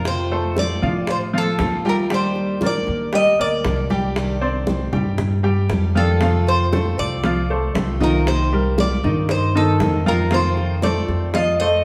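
A metallic, up-front Cuban tres melody leads this danceable Cuban son and guajira groove, sounding from the first moment alongside a boxy parlour steel-string guitar and a woody pizzicato upright bass, with thin-skinned congas and dry, hard-handed bongos in the background and a brilliant, worn baby grand piano adding arpeggios with audible action noise from 0.3 seconds, the band playing together in one room under a wet large studio reverb over chords that move between F7, Ebmaj7, Cmadd9 and Cm7.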